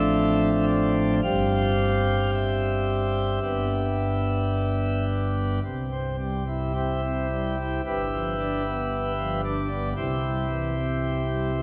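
The recording sounds like a worn old cassette, its warbly pitch drift drifting over a wet church reverb that lingers for about 3.1 seconds. This is a short, serene and reverent chorale-style classical passage in C major, cut from a longer piece, moving in 4/4 at a slow, rubato 54-57 BPM, tuned to A4 = 438 Hz. A solo pipe organ plays throughout on a full plenum registration, its mixtures bright and brilliant, with a romantic voicing placed up front and spanning from a deep G1 to F5. The harmony opens on Dm7/A, settles through C/G to G, then begins a second phrase at 5.6 seconds on C before passing through G7 and resolving back to C at 10.0 seconds. The blend of the grand organ tone with the fragile, wavering tape gives the hymn-like music a distant, nostalgic glow.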